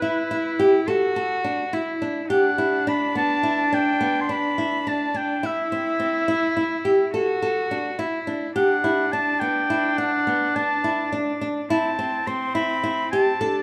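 A moderate recital-hall reverb surrounds this brief chamber passage, cut from a longer piece, with all three players sitting up front. The music is contemporary and instrumental, playful yet restless, moving in an uneven 11/8 metre with a straight feel. A solo oboe carries the melody in a classical style, its tone warm and soft in attack, touched by light vibrato. Beneath it a single bowed cello plays a second line in period style, its gut-string sound rich, reedy and a little boxy, with an airy bow. An acoustic guitar, fingerpicked in flamenco fashion, supplies arpeggios throughout, moving through rootless major sevenths and add-nine chords before settling on a minor add-nine colour near 11.7 seconds.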